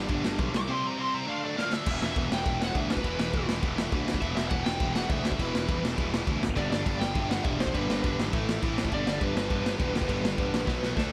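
A rowdy, energetic punk rock passage at 204 BPM opens on stacked guitar riffs: a tight, bright distorted guitar, a scooped, double-tracked high-gain guitar and a compressed overdriven guitar in the background, over a growly fuzz bass moving through G, C and D toward E minor. A raw garage drum kit sits up front with a punchy kick, dark cymbals and a gritty, pumping small-room sound, while a lead guitar through a small cranked amp adds an overdriven melody with digital delay from 0.6 seconds. The overdriven background guitar drops out at 1.9 seconds and returns at 6.6 seconds, and the dry, close sound carries the piece to a closing drum fill on B5.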